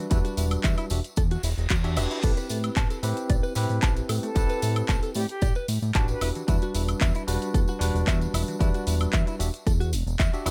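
A cosmic, sensual nu-disco groove in a straight four, this short cut from a longer piece rides on an up-front, punchy electronic kick and a fat, thick analog bass with a sawtooth edge and a moving notch. A tape-warm house kit re-recorded in a small room fills in crash cymbal, handclaps, hi-hat, shaker and woodblock, while a close, dry tambourine sits in the background. A bell-like tine electric piano carries the Em9 and Am9 chords through delay, and a direct-recorded clean electric guitar plays a bright, scooped, compressed riff dressed in subtle chorus, vintage 12-bit sampler grit and delay. An electronic reverse cymbal sweeps in at 1.4 seconds, leading into the move to Am9. From 4.2 to 6.3 seconds an airy silver concert flute adds a short, expressive melody with vibrato and echoing delay as the harmony returns to Em9, all set in a digital ambience.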